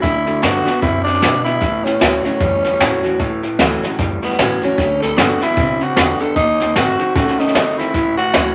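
A growling tenor saxophone leads this rowdy, upbeat rockabilly excerpt, its raspy, gritty tone sitting close-miked and up front with vibrato in a solo pop style. The tune swings along at 152 BPM in 4/4 in A mixolydian, moving through D6, A6 and a D#dim7 before landing back on A6 near 7.9 seconds. A twangy electric guitar through a small old amp plays a riff with a bright, slightly broken-up, lo-fi bite. Beneath it, a full-bodied dreadnought steel-string acoustic guitar is picked as accompaniment. A woody, thumpy upright bass on gut strings is plucked in the background, while a jazz kit played with brushes sits up front with a boomy kick, a medium-tuned snare, hi-hat and a rolled-off top. Wet studio reverb and vinyl crackle give the whole piece a vintage patina.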